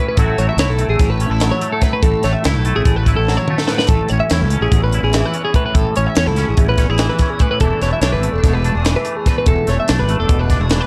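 A twangy, compressed electric guitar with an ensemble chorus and a clean twelve-string electric guitar playing arpeggios open this bright, intricate math rock and midwest emo excerpt in 9/8, soon joined by a round, punchy fuzz bass with overdrive and a crisp fusion drum kit with a high-tuned snare and tight kick that plays a fill at 3.3 seconds, all in a dry, dark mix that moves from F#m7/A through Amaj9 to E7sus4.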